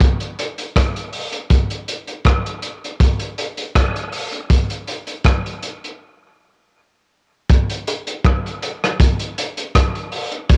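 A crunchy breakbeat drum kit sits up front throughout this short reggae cut from a longer piece, its hi-hat, tight kick and rim click carrying a gritty, saturated, mid-forward tone with a rolled-off top and the character of cassette tape. The tempo is an unhurried 80 BPM in 4/4, with a gentle 16th-note swing that gives the groove a deep, meditative sway. A break arrives at 6.0 s, and a second section begins at 7.5 s. Just after, at 7.9 s, high-tuned bongos in the background add a brief, hard-handed accent, thinned by a high-pass filter and trailed by dub echo. Light small-room reverb and a homespun cassette recording give the whole piece an intimate, lo-fi feel.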